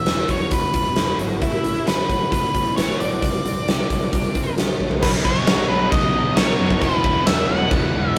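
Quiet-loud alternative rock in E major at 133 BPM, restless and cathartic, this short cut opens with a dark octave-fuzz lead guitar carrying the melody over a twangy, clean twelve-string electric guitar picking arpeggios, a growly picked bass and a huge, up-front arena drum kit with a fat snare, punchy kick and bright cymbals. After a drum fill at 4.8 seconds, the twelve-string drops out at 5.0 seconds and three very quiet distorted electric guitars, one double-tracked and one high-gain, enter with a riff as the chords move from Badd9 back to Eadd9. The rough rehearsal-room sound carries a light reverb.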